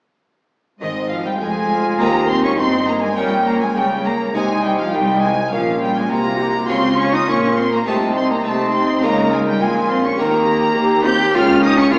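Classical music in a baroque-style concerto movement with solo episodes, this brilliant, festive passage is cut from a longer piece and moves in a straight 4/4. A single cello carries the melody up front, its bowed tone focused and rich with vibrato and a smooth top, while a chamber violin section sings a rich, smooth melody high above and a second violin line sits in the background. A dark, intimate viola section supplies soft-attack accompaniment alongside a full, plucked harpsichord in the French style with two sets of strings. The bass is shared by a close, focused studio cello section and a distant symphonic double bass section, both in the background. All parts play together from 0.8 to 12.0 seconds, the harmony moving through minor-sixth and slash chords before settling on Eb and Eb9. The sound is heard from further back in a reverberant recital hall with a 1.9-second decay, with a small-speaker quality.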